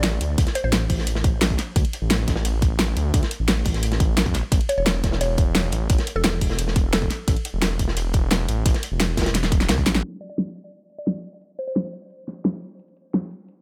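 A dry, low-pass-filtered mix opens straight into the drop of this dreamy, melancholic liquid drum and bass cut at 174 BPM, anchored by an up-front, saturated detuned saw bass with a menacing filter swell. A fat-snared pop kit, a punchy electronic kick and a dark, gritty breakbeat kit with high-passed hats and snare carry the beat. Meanwhile a woody, round FM pluck with chorus, phaser, 12-bit sampler grit and tape echo drifts in with sparse phrases over D5 and A5 chords. A drum fill and band accent close the first section near 10.0 seconds, after which the bass, breakbeat kit and kick fall away, leaving the pop kit, joined briefly by a last phrase from the pluck, to ride a filter sweep to the end.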